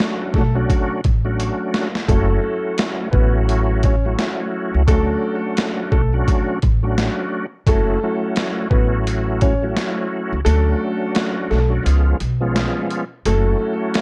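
Gritty and tough, this boom-bap hip-hop excerpt swings over a sampler-style drum kit with a thumpy kick, a high-tuned snare and an overdriven, pitched-down crunch, a drum fill at 1.4 seconds, and the kick dropping out from 10.5 seconds. A woody, gut-strung pizzicato upright bass sits up front beside a reedy tonewheel organ with key click, chorus vibrato and slow rotary speaker, moving between Dmaj7 and F#m7 before a C#7 near the close. Over them, a delayed upright piano carries the melody with an intimate, vintage tone and audible action noise, all under a light reverb and a worn, warbling cassette-tape drift.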